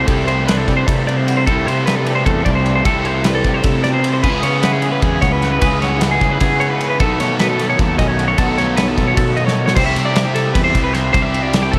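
A twelve-string electric guitar plays twangy, compressed arpeggios with slapback echo over a crunchy double-tracked overdriven guitar riff, a slightly broken-up small-amp guitar with ensemble chorus in the background, and a growly fuzz bass, joined at 0.1 s by an up-front loose indie drum kit with a punchy kick and dark cymbals, in this wistful, intricate math rock and midwest emo fragment at 304 BPM in 7/8, moving through C69, C#m7 and B7 before a drum fill at 9.5 s leads back to C69, inside a concert hall reverb that gives a big arena sound.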